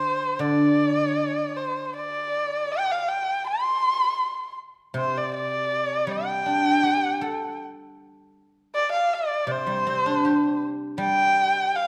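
In a straight 2/4 at 80 BPM, this graceful, festive piece of Chinese traditional music in G shang mode, taken from a longer work, sets an expressive, closely heard bowed erhu singing the melody up front with vibrato and portamento over a silvery, ringing guzheng plucked with fingerpicks, both sitting in a dark, warm recital-hall reverb as the music moves into a new section at 8.0 seconds.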